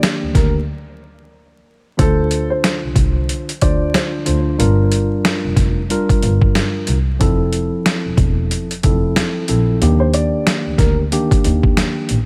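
A swung boom-bap groove at 92 BPM in 4/4 drives this dark, reflective hip-hop excerpt, with a sampler-style drum kit up front: a thumpy kick, medium-tuned snare and hi-hat, compressed, pitched down and gritty with overdrive. A bowed double bass, played by one player sul tasto, adds a soft-attack, floating low line with a smooth top. A mellow tine electric piano carries the chords through Ebmaj7, Dm7, Gm7 and Fmaj7, clean and direct but filtered and tinted by cassette tape. Above it, a woody, boxy upright piano with audible action noise and long sustain plays an intimate melody from 0.3 seconds and returns at 10.0 seconds, filtered and trailed by delay. A break arrives at 0.7 seconds, and the music sits in a small room with light reverb over a bed of vinyl crackle.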